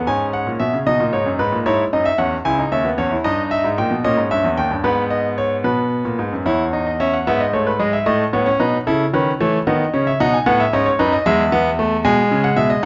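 A bright, up-front grand piano plays alone throughout this elegant, lively baroque-style three-part classical fugue excerpt in a straight 12/8 at 75 BPM, tuned to A4 = 436 Hz and ranging from C#2 to G#5, moving through G#m, C#m and D#7/G chords before settling into E major at 6.5 s, its long sustain and audible action noise framed by a moderate recital-hall reverb with a softened top end.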